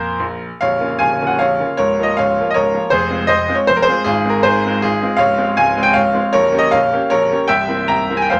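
Classical romantic triple-time dance for solo grand piano, nostalgic and capricious, its dotted rhythms pulled about by rubato and uneven beats as a bright, long-sustaining, up-front piano spans Bb0 to Bb5 in moderate studio ambience, opening on a lone high Bb5 before the harmony moves from Bbm at 0.6 s through Fm and Dbmaj7 to a C7 at 7.5 s, where this fragment of a longer piece is cut off.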